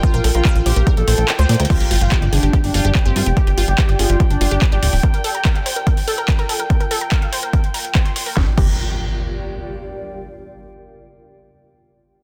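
An alien, hypnotic slice of psychedelic trance in a straight four, cut from a longer piece and opening on a drop where a punchy, up-front electronic kick and a drum and bass kit with cracking snare, metallic hats, handclaps and crash cymbal drive beneath a plucky analog bass, funky and wave-folded. A gritty, screaming overdriven synth lead carries the melody through the first 4.9 seconds with distortion, phaser, delay and sidechain pumping, while a nasal vowel-sweep wobble bass sits barely audible at the very start. A lush, bright unison pluck riff with delay and pumping weaves through nearly the whole passage, until 8.8 seconds, over a bubbling stepped-filter texture of random filter steps in the background and a cloudy, blurred granular pad. Around 1.3 seconds the band hits an accent, the kick drops out briefly and a drum fill leads into a new section at 1.7 seconds, marked by a background electronic impact and a filter sweep on the arpeggiated synth. 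The dense, heavily limited digital mix closes with another impact and the bass returning at 8.4 seconds.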